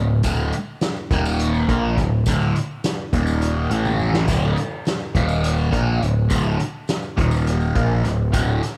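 A double-tracked fuzz guitar opens this psychedelic rock fragment, playing a heavy, picked riff in 7/8 alongside a growling, overdriven electric bass that sits down low beneath it. A moment later, at 0.2 seconds, a soft-mallet drum kit joins with a roomy studio sound, dark cymbals, a medium-tuned snare and a punchy kick. A jingly tambourine enters at the same time, tucked in the background in a small room. The riff circles between D5 and Eb5 power chords, reaching briefly to A5 just before a drum fill at 3.9 seconds, which gives the loop a hypnotic, mysterious pull. The guitar's phaser-tinged fuzz stays up front in a light studio reverb, and the cut ends as abruptly as it began, clearly lifted from a longer piece.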